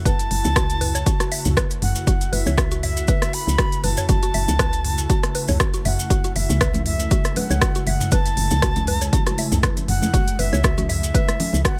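A breathy, reedy concert flute carries the melody with dub echo over a mallet-like pluck arpeggio, a woody FM bass, a punchy up-front kick, a deep house kit of smooth hats, rim clicks and toms, grainy maracas and an ethereal pad holding an F#m7 chord, with soft-handed congas joining in the background at 6.4 seconds in this earthy, spiritual afro house excerpt.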